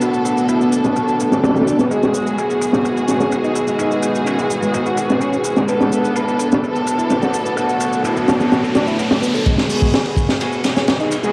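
A crunchy, up-front breakbeat kit with a tight kick, high-tuned snare and dark cymbals drives this funky, energetic breaks fragment alongside a dry, overdriven analog shaker, while a double-tracked overdriven electric guitar riff, bowed chamber string stabs with vibrato and a deep, detuned sawtooth pad with sidechain pumping cycle through Bm7 and G#m7, a background riser arrives at 7.0 seconds, and from 9.5 seconds filter sweeps on the guitar and strings lead into a build-up, all bathed in spring reverb and the character of a cassette home recording with vinyl crackle.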